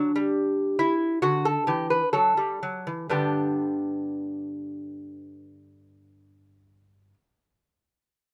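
A delicate, up-front lute sound with light reverb opens this short excerpt cut from a longer piece, its gut strings and double courses, some doubled at the octave, giving the tone a warm character. It is a classical, baroque-style dance in G major, radiant and dance-like in mood, moving in 4/4 at roughly 60-72 BPM with a free, rubato feel. The lute plays alone throughout, fingerpicked across a range from G2 up to B4. The opening passage slows as it moves from a Dsus4 chord to D, and at 3.1 seconds the music settles onto G for the closing phrase, which carries on until the lute stops at 7.1 seconds.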